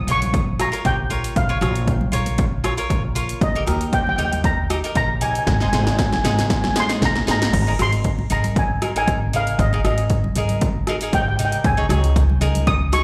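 Calypso at 117 BPM in Ab major, bouncy and sunny, heard live through a venue's PA with club reverb: a shimmering steel pan carries the melody with slapback and tape echo over crisp picked cavaquinho, woody, growly pizzicato upright bass, punchy overdriven 80s electronic pad drums with a gated snare and a fill from 5.5 to 7.5 seconds, and bright, background congas, as the chords move from Bbm through Eb and Ab to Absus2 and Dbsus2 in this excerpt cut from a longer piece.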